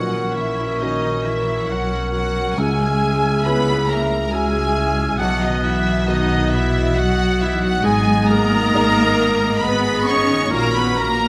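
In a rubato triple metre, this sorrowful, longing cinematic orchestral cue sets a lush, vibrato-rich violin section on the melody over a more distant second violin line, airy flutes, a bright solo clarinet, a mellow, roomy oboe, a soft felt-muted upright piano, smooth violas, a horn section holding sustained chords, ringing fingerpicked harp arpeggios and warm, expressive cellos and double basses, all blooming in a wet scoring-stage reverb as the chords move from F#/A# through C#m, B and G#m back to F#/A#.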